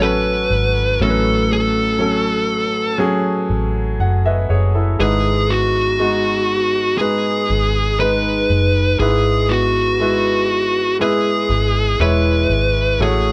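Tender and emotional, this pop ballad moves in a straight, unhurried 4/4, played by a band together in one room with light reverb. A fuzz lead guitar carries the melody up front, its picked, compressed tone dark and distorted in a narrow upper-middle range. A clear, woody upright piano sits just as close, supplying the accompaniment and stepping out with a fill from 3.5 to 5.0 seconds. Behind them, a fingerpicked, plugged-in jumbo steel-string acoustic guitar spins quiet, full-bodied arpeggios on old strings, while a vintage foam-muted fingered electric bass gives a round, punchy low end. The harmony moves from F#m to G#m and settles on E/G#, all within a short passage cut from a longer piece.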